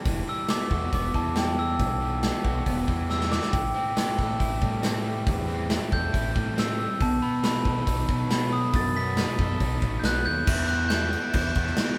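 A bell-like glockenspiel played with rubber mallets carries the melody and solos until 10.5 seconds, its close-miked tone soft and dry in this restless, cool indie rock excerpt at 138 BPM. Beneath it, a crunchy, double-tracked guitar plays a picked riff, a growling fingered bass adds overdriven grit, and a punchy, up-front rock kit with bright cymbals plays a short fill at 3.1 seconds. The harmony moves from Emadd9 through Am7 and B7 to Em at 10.5 seconds, with the band heard live together in one room under moderate reverb.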